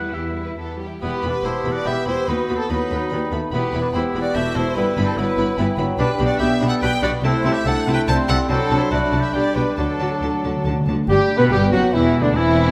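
A quick, cheerful classical-period movement for symphony orchestra in 3/4 at 144 BPM, played with a spirited rubato feel, opens in E minor and brightens toward G major from 6.0 seconds. A rich, vibrato-laden chamber violin section carries the melody, while a second violin section with a close, expressive tone, a distant and roomy oboe, and a bowed ensemble of violas, very quiet and focused, fill out the inner texture. The double basses and a lush cello section, the latter set in the background, ground the harmony from the start. At 1.0 second the winds and brass join: an airy, hollow silver flute and a soft-attack clarinet add second lines from the background, a lightly vibrato bassoon joins the accompaniment, and a mellow, tight French horn section holds sustained chords. Timpani struck with hard mallets on calf heads add an articulate fill from 9.8 to 11.0 seconds over a D chord before the music settles on G, all set in a moderate scoring-stage reverb, as this cut from a longer piece closes.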